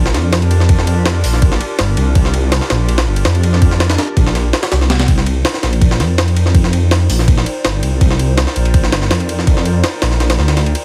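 A warbling, nostalgic pad with chorus and its own reverb holds sustained chords over a thick, menacing detuned saw bass with tube saturation, opening this dark, frenetic drum and bass excerpt in C minor at 164 BPM. A gritty, pitched-up jungle sampler-style kit with a thumpy kick, high-tuned snare, hi-hat and ride sits up front with overdrive, and the kick drops out between 4.4 and 5.1 seconds as the harmony moves from Gm7 to Cm11. The mix is dry and heavily compressed, with a radio-like sound.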